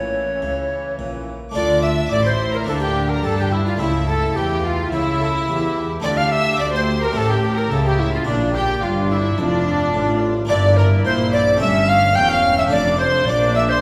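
Classical baroque-style concerto movement in D minor at 108 BPM, stormy and driving, heard as a short fragment cut from a longer piece and set in a reverberant concert hall. An airy, bright tenor recorder with a chiffy, crisp attack and vibrato carries the melody alongside a close, rich violin section with a gut-string tone, while a second smooth-topped chamber violin section plays a supporting line. Underneath, a round Flemish-style harpsichord and a period-style viola section with light vibrato provide accompaniment, and a dark cello section sits in the background with a reedy double bass section on the bass line.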